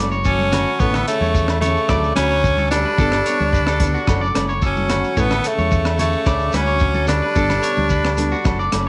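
Joyful and danceable, this highlife guitar band excerpt moves at a straight 110 BPM over a cycling Dmaj7/F#, A, Dmaj7 and Gadd9 progression, led by a raspy, forceful tenor saxophone up front with a clear, roomy trombone adding a distant second line with scooped notes. Beneath them a twangy electric guitar at the edge of break-up plays arpeggios through spring reverb and tape echo, while a bright fingerpicked nylon-string guitar with finger squeak and a round, punchy fingered bass fill out the harmony. A crunchy, saturated breakbeat kit of hi-hat, kick and rim click drives the groove with a rolled-off top, joined from around 0.4 seconds by soft-handed congas, with ringing agogo bells and a grainy shekere in the background, all in a small room with light reverb.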